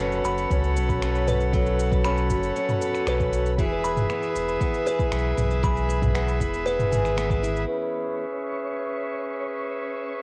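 Lo-fi cassette grain and light reverb give this delicate, pastoral folktronica excerpt a homemade feel. A reedy, hollow accordion holds chords up front over bright, boxy picked steel-string guitar arpeggios with tape echo, a round sine sub bass, and a tinkling, slightly out-of-tune music box with analog delay. A faint flickering granular texture drifts behind them, while an organic electronic kit of cabasa, finger snaps and toms joins a deep electronic kick that sits in the background, both re-recorded in a large room. The drums, bass, guitar and music box have all dropped away by 8.2 s, leaving the accordion under a filter sweep with the grainy texture until 10.2 s.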